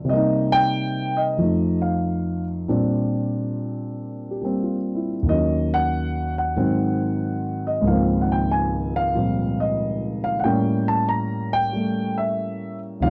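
A dry, close 1970s-style studio sound with light reverb frames this 13.1-second cut from a longer solo jazz performance at 93 BPM in 4/4, swinging its eighth notes and tuned slightly above standard pitch at A4 = 441 Hz. A dark, mellow concert grand sits up front on its own, spanning Db2 to Bb5 with a deep bass. It carries a sophisticated progression that moves from Cm7, F7 and Bb69 through Ebm7 and Ab7 to a lush Dbmaj13 at 7.9 seconds, then closes on an A7b9 at 10.4 seconds.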